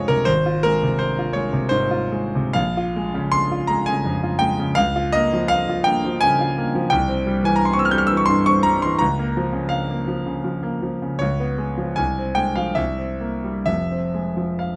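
A clear concert grand piano plays alone from the start in this passionate, bittersweet Romantic character piece, a brief passage cut from a longer work, moving in a flexible rubato triple metre through a minor-key progression that settles onto its home chord at 13.7 seconds, its smooth, vintage tone with deep bass and short sustain captured dry and up front by close, detailed microphones.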